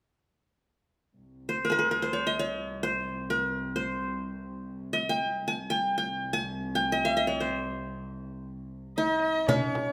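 A bright-edged, up-front qanun, played with fingerpicks, carries the melody of this passionate excerpt from a longer Arabic maqam ensemble piece in free time, entering at 1.5 seconds over a dark, smooth-topped bowed cello section that holds a low drone with soft attack and expressive vibrato. Near the close, at 9.0 seconds, a single bowed violin adds an even, nasal, boxy second line with vibrato, and from 9.5 seconds a crisp metal-shell darbuka and a small, bright frame drum sound briefly, close and dry in the background. A moderate recital-hall reverb surrounds the group.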